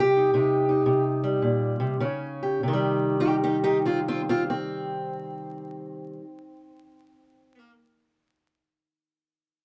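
Acoustic country blues in C minor, mournful and smoky, swinging in 4/4 at 93-118 BPM, with a fingerpicked steel-string parlour guitar playing alone and up front from 0.0 to 7.7 s, its old strings woody and boxy, slowing down over the opening 2.6 s with a stop on a C minor chord before the chord returns at 2.6 s, all in a dark recording with moderate studio reverb and vinyl crackle in this short cut from a longer piece.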